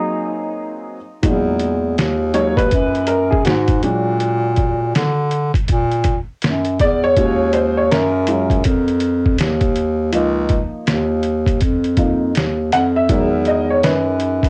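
Relaxed and smooth, this jazz-hop passage, cut from a longer hip hop piece, opens with a brief breathy flugelhorn note, scooped and lightly vibrato-tinged through tape echo, over a woody upright piano with audible action noise and a slightly detuned, intimate tone. At 1.2 s a gritty, pitched-down sampler-style drum kit with a thumpy kick and swung 16ths arrives up front alongside a roomy bass clarinet carrying the bass, and the piano takes a solo over extended jazz chords until 14.5 s. Both flugelhorn and piano carry cassette grain and plate reverb, and the home cassette recording has a light reverb.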